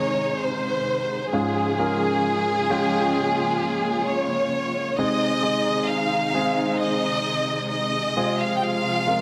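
Heartfelt and hopeful, this short pop passage, cut from a longer piece, moves at an unhurried 66 BPM in a straight 4/4 in Ab major. A rich studio violin section carries the melody between Ab4 and G5, its bowed ensemble tone lush and expressive with vibrato, sitting close and up front with a tape echo trailing behind it. A concert grand piano accompanies from Ab2 to G5, intimate and polished, with deep bass, long sustain and audible action noise, also up front and touched by tape echo. Beneath them a studio string section holds sustained chords from C3 to F4, smooth on top and quieter in the blend. The harmony steps from Ab to Db, then Ab/C at 5.0 seconds and Fm at 8.2 seconds, all within a moderate plate reverb that gives the echo-heavy mix a long, glowing tail.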